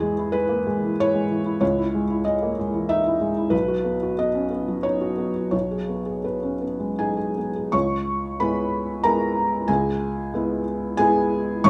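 A soft, mellow felt-muted upright piano plays alone and up front, its action noise audible, in this wistful, intimate neoclassical minimalist fragment in C# dorian, drifting in a rubato 3/4 at 78-96 BPM through E, C#madd9, B and G#m/B before settling on C#m7 as a new section begins at 7.7 seconds, all held in a moderate recital-hall reverb.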